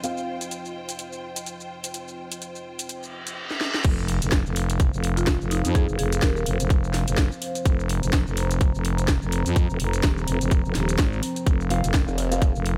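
Bass house at 126 BPM in 4/4 with a 16th-note swing, this aggressive, bouncy excerpt is cut from a longer piece and moves from a short build into a heavy drop at 3.8 seconds. It opens on a dark analog pad of detuned, moody sustained chords with chorus, 12-bit sampler grit and sidechain pumping, joined by mellow, boxy baby grand piano stabs under a filter sweep and delay, a lush, bright bowed string section with vibrato, and an overdriven garage kit with a cracking snare, hi-hat, shaker and crash. A reverse cymbal and a drum fill rise into the drop, where an electronic impact lands. From there a growling, thick FM bass with tube saturation and a tight, overdriven electronic kick sit up front. A dry, woody marimba with a buzzing tone adds a brief delayed melody in the background, and near the end the piano stabs return as a wobbling, formant-filtered sawtooth bass with chorus and overdrive cuts in at 12.1 seconds. 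The whole mix sits in a digital ambience, with the drums carrying a small-room sound.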